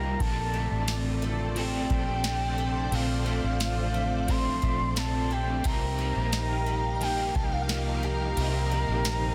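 This dream pop excerpt moves at a relaxed 88 BPM in a straight 4/4, with a booming analog drum machine setting the pulse from 0.2 seconds through a deep kick, crisp snare, ride cymbal and tambourine, all carrying a tape-warmed character. Underneath, a vintage muted fingered electric bass sits up front, its round, punchy, foam-muted tone anchoring the low end in Bb major. A picked twelve-string acoustic guitar spins shimmering, octave-doubled arpeggios through lush chorus and tape echo, while a string machine ensemble holds evolving sawtooth chords with a slow attack and a sub octave beneath them. Tucked in the background, a dark, overdriven semi-hollow guitar adds double-tracked accompaniment colored by tremolo and ensemble chorus. Above it all, a soft octave-layered synth lead sings the melody in a high register, its triangle-and-sine tone warbling with vibrato, portamento, phaser and tape echo as the harmony drifts from Bbmaj9 to F9sus4 at 5.7 seconds, settling into a blissful, dreamy haze under light reverb and a dense, heavily limited modern master.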